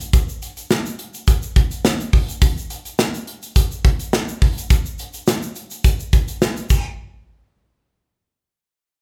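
A straight 4/4 funk groove at 105 BPM opens this short cut from a longer piece, with a funky, late-night mood. A modern acoustic studio drum kit carries the beat on kick, snare, hi-hat and crash cymbal, sitting up front with an airy, polished sound, a tight kick and a medium-tuned snare. An egg shaker plays alongside from the start, grainy and bright, recorded close and dry yet placed in the background beneath the kit. The drums stop at 6.8 seconds and the shaker at 7.0 seconds, where a new section begins. The two players sound like a band performing live in one room, with a moderate large studio reverb of 0.9 seconds giving the space some depth.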